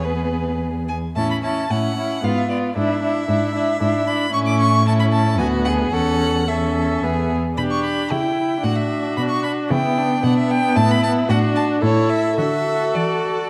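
Spirited and graceful, this quick classical-period movement for string quartet moves in triple time with a flexible, rubato feel, a short passage cut from a longer piece. Up front, a rich-toned first violin sings the melody with smooth, even vibrato over the second violin's supporting line, while the expressive viola adds warm accompaniment with portamento. The cello, also up front, anchors the bass with soft attacks and sliding expression. Moderate scoring-stage reverb lends the dark production a sense of space, and the harmony turns to a new tonal centre from 7.6 s.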